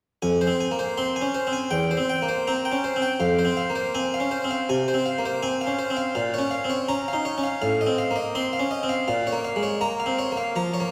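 Freely rubato in 4/4 at 81 BPM, this grave, introspective baroque-style suite movement in F minor, cut from a longer piece and tuned to A4 = 439 Hz, gives a solo French-style harpsichord on one set of strings a round, plucked voice placed up front, spanning E2 to C6 from 0.2 to 10.9 seconds as the harmony moves from Fm through C7/E back to Fm, then to Bbm and F7/A before coming to rest on Bbm, within a wet scoring-stage reverb of 1.9 seconds heard from further back in the room.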